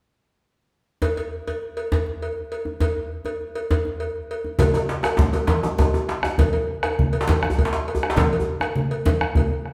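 West African traditional drum ensemble in 12/8 at 134 BPM, earthy and powerful, where a metallic cowbell and a close, dry djembe played with soft hands open at 1.0 s before a round, up-front bombo, thick-skinned damped congas with a saturated, compressed edge, and a second tight, cracking djembe with metal rattles join at 4.6 s, the whole band heard live in one room with a wet large-studio reverb in this excerpt from a longer piece.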